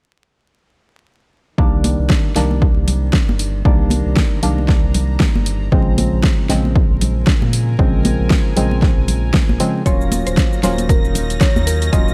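A punchy, overdriven electronic kick sits up front in this smooth, hypnotic deep house excerpt at 116 BPM with a swung 16th feel, entering at 1.6 seconds alongside a round, dark analog bass with tube saturation and hollow organ-like stabs with chorus, with a fat-snared drum kit of hi-hat and shaker arriving at 1.8 seconds, all over vinyl crackle and chords moving from Cm7 to Bbm7 to Ebm7. Dry congas and a pure, bowed studio string section that fades in sit in the background, the strings, bass and stabs pumping with the sidechain. At 9.9 seconds a woody FM mallet-like pluck with a cassette tape tint carries the melody while a silky, nasal, bright analog string pad with ensemble chorus and vibrato sits behind it.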